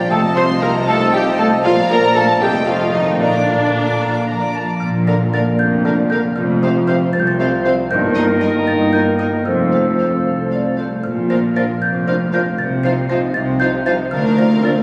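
Cinematic and magical with a mischievous edge, this 6/8 excerpt sets a delicate, tinkling, slightly out-of-tune music box melody, joined by an expressive, distant violin section, over a clarinet, a second violin section and a very quiet airy flute ensemble on second lines, mellow bassoon and smooth viola accompaniment, ringing fingerpicked harp arpeggios, dark horn chords, and a lush cello section and warm double bass section underneath, all within a wet concert-hall reverb with a phone-in-the-room compressed sound.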